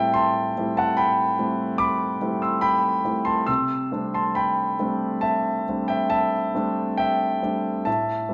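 Worn, warbling old cassette tape gives this short fragment a wavering pitch drift, set inside a moderate recital hall reverb. A solo concert grand piano plays a hazy, serene impressionist classical passage in 5/4 at a rubato 65-74 BPM, moving from Am9 to C69 at 3.5 seconds. The piano sits up front, intimate and polished, with deep bass, long sustain and audible action noise across a range from A2 to E6.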